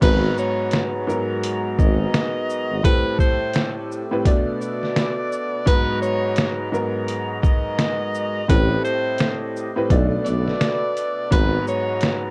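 Boom-bap hip-hop with a tough, gritty mood and a swung 4/4 feel, this short excerpt from a longer piece pairs a breathy tenor saxophone melody, jazz-styled with subtone, vibrato and scooped notes through an analog delay, with a worn, woody, slightly detuned upright piano and a fat tonewheel organ holding sustained chords through a slow rotary speaker over a G#m9, Am9 and Bm7 progression. A compressed, pitched-down sampler-style drum kit sits up front with a thumpy kick, medium-tuned snare, hi-hat, shaker and crash, while a mellow, close-miked tuba plays the bass from 0.0 to 2.8 seconds and returns at 8.5 seconds. The dry home cassette recording gives the piano and organ a tape-worn character.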